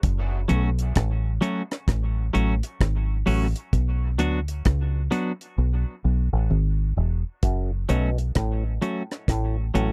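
Hypnotic and meditative, this slow dub reggae excerpt at 65 BPM in F# minor swings on a round, dark fingered bass and a dry, tight-kicked drum kit of hi-hat, kick and rim click, joined at 0.5 seconds by a twangy, compressed clean electric guitar soaked in dub echo, before the drums drop out from 5.6 to 7.4 seconds and a stringy, overdriven auto-wah clav riff enters at 7.4 seconds, all captured in a close, dry 1970s-style studio sound.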